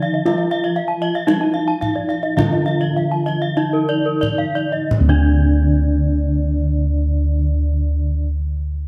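The bossed gongs stand out most in this slow, hypnotic fragment of Balinese gamelan: round, airy bronze tones with a beating quality, placed up front to carry the bass. Above them, a bronze metallophone carries the melody with a wooden mallet, its paired tuning producing the shimmering beats that color the whole ensemble. A darker, smooth metallophone sits in the background as accompaniment, while two higher metallophones spin arpeggios, one bright and airy under a horn mallet, the other mid-forward and ringing. A tight kendang, struck with hard hands and sounding distant as if in a large room, plays from 0.3 to 5.6 s. In 4/4 at roughly 44 to 62 BPM, the music slows through its first 4.9 seconds before moving into a second section, all heard through close, detailed microphones with light reverb.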